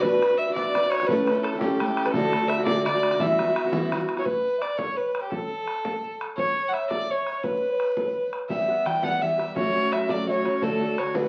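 A dark, woody fiddle, bowed by a single player with light vibrato, sits up front and carries the melody in this driving, lively Celtic jig, cut from a longer piece and moving at 113 BPM in 6/8 in E dorian. Beneath it, a very quiet fingerpicked Celtic harp with a ringing tone and an airy, mellow wooden flute trace second lines; the flute is tongued with vibrato, unsteady and rolled-off in the highs. A boxy, picked parlour steel-string guitar, plugged in and placed up front, plays the accompaniment, drops out at 4.3 seconds when the chords fall away, and returns at 8.5 seconds over Em, F#m and D. An open, boomy bodhran in a live room keeps the percussion going throughout. The whole recording is wrapped in wet studio ambience and the crackle of a very old 78 rpm record, which gives the dark mood an aged cast.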